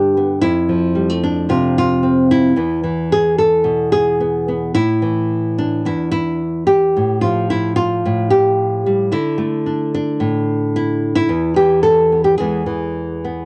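Rubato in 4/4 at roughly 110 BPM, this haunting, intimate folk fragment, cut from a longer piece and tuned to A4 = 442 Hz, sets a solo fingerpicked nylon-string guitar with a classical touch up front, its tone colored by cassette tape, ranging from E2 to A4 as it moves through F, E, A5, Fadd9/A, Dsus2, E5 and back to E over 13.5 seconds, while light reverb lends the home cassette recording a close, private air.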